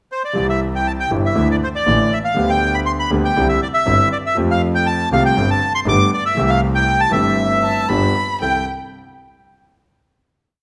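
Passionate and elegant, this short tango in C major moves at 119 BPM in 4/4 with a rubato feel, its reedy, bright bandoneon carrying a motif-built melody up front from 0.1 s. A smooth, vintage-toned concert grand piano and a biting, earthy bowed double bass play a tango rhythm of uneven groups of three and two eighths beneath it, while a single violin with expressive portamento enters at 7.6 s to answer in the melody's rests. A moderate recital hall reverb surrounds the ensemble before the piece settles on a C6 chord at 8.4 s.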